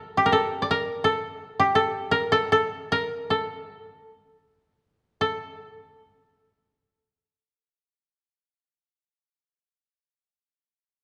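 A mellow, woody solo koto played with fingerpicks sits up front in this calm, austere fragment of Japanese traditional chamber music, moving freely in rubato 2/4 between 53 and 86 BPM within the range D4 to D5, tuned to A4 = 442 Hz, easing to a slower pace from 1.8 to 5.2 seconds before a new section begins, all set in a moderate recital-hall reverb.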